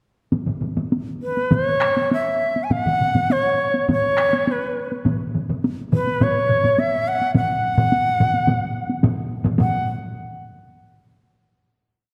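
A wet concert-hall reverb gives this short, complete Japanese taiko ensemble piece a spacious, ceremonial air. It opens at 0.3 seconds on heavy-stick drums. A close, dry solo taiko plays a repeating pattern, while one ensemble of taiko plays phrases in a small room and a second, compressed and saturated group sits in the background. At 1.2 seconds a bright, reedy bamboo shakuhachi enters up front with a soft attack and airy vibrato, spinning an ornamented modal melody between B4 and G#5 in F# suspended pentatonic. The straight 4/4 pulse speeds up from about 100 to 113 BPM, keeping the mood driving. The piece closes on a final note held from 9.6 seconds.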